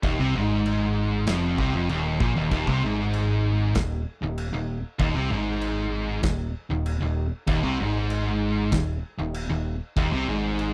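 Relentless and dark, this short heavy metal cut runs in a straight 4/4 and is drawn from a longer piece. Two electric guitars each carry a riff across the full 10.7 seconds, both up front: one is a bright, scooped, high-gain tone driven by distortion, the other a sludgier, overdriven sound with a warmer edge, each played with a pick in a low register. Beneath them a growling electric bass, picked and overdriven with a direct, amped bite, anchors the bottom end. A big acoustic rock drum kit fills out the studio room with a punchy kick, a medium-tuned snare and a china cymbal. The recording is dry and close, with little reverb, giving it the feel of a 1970s studio session.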